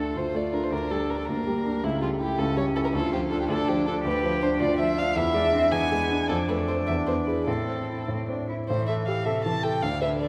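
Urgent and restless, this quick classical-period movement for piano trio unfolds in 6/8 with a rubato feel and is cut from a longer piece. The violin carries the melody up front, its bowed tone dark and woody, with vibrato and a smooth top from a single player. Beneath it, the cello takes a second line, rich and pure, bowed sul tasto with a soft attack so that it sounds floating and distant. The grand piano supplies a clear, natural accompaniment, also up front, and all three parts play together through the full 10.3 seconds. A wet scoring-stage reverb, captured in a church or concert hall, surrounds the trio, and a new section begins at 8.7 seconds.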